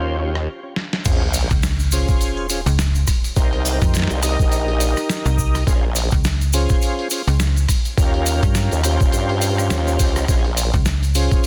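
A snappy, metallic slap-like FM bass enters up front at 1.5 s in this funky, swaggering glitch hop cut at 104 BPM in Bb dorian with a swung 16th feel, joining a wobbling, overdriven formant-sweep wobble bass, smooth tonewheel organ stabs colored by chorus vibrato, slow rotary speaker, sidechain pumping, low-pass filter and delay, a gritty, pitched-down boom bap sampler kit with a tape-warm medium-tuned snare, rim clicks, hi-hat and crash, a thumpy electronic kick, a grainy, distant egg shaker, and a background sub drop marking the drop at 1.1 s after a brief stop and drum fill, set in a dry, dense, heavily limited master.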